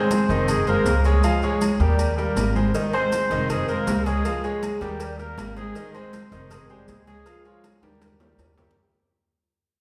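A punchy, tight trombone section carries the melody in this festive, joyful salsa clip, its brilliant pop-style tone shaded with vibrato. Beneath it, a bright, polished concert grand piano sits up front with a deep bass register, while a woody, thumpy pizzicato upright bass anchors the cycling Fm7, Db, Eb, Ab changes. Thick-skinned congas struck with hard hands and ringing metal-shell timbales and agogo bells fill the background, while grainy, mellow maracas sound close and dry. Tight, high-tuned cowbell and bongos slip in very quietly at 2.7 seconds. The whole passage, cut from a longer piece, fades out in a resonant recital-hall reverb, with a drum fill arriving at 7.6 seconds.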